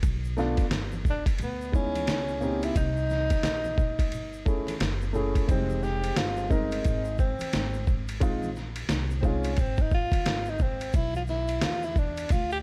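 A studio-reverb sheen wraps this smoky, cool jazz-hop excerpt, where a gritty, pitched-down sampler-style drum kit with a thumpy kick and a woody pizzicato upright bass ride a lazy swing beneath soft shaker and conga in the background, while a dark, intimate grand piano with audible action noise comps through the changes from 0.4 seconds and a breathy tenor saxophone with scooped notes and light vibrato enters at 1.1 seconds before taking a mellow solo from 5.5 seconds.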